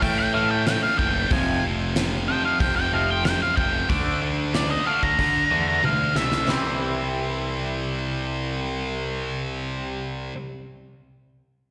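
An octave-fuzz lead guitar takes a dark, distorted solo over the opening 6.5 seconds, carrying the melody high above this anthemic, bittersweet passage of quiet-loud alternative rock in C major at 93 BPM. Beneath it, a twangy, scooped electric guitar plays clean arpeggios through a phaser, while a bright high-gain guitar drives a picked riff, both with slapback echo. A growly, up-front fuzz bass anchors the low end. A loose indie drum kit with a fat snare and boomy kick plays a fill from 5.8 seconds and drops out at 6.6 seconds as the music moves into a new section that settles on C. The sound is that of a live gig heard through the venue's PA, with light reverb and the resonance of a recital hall, taken from a longer piece.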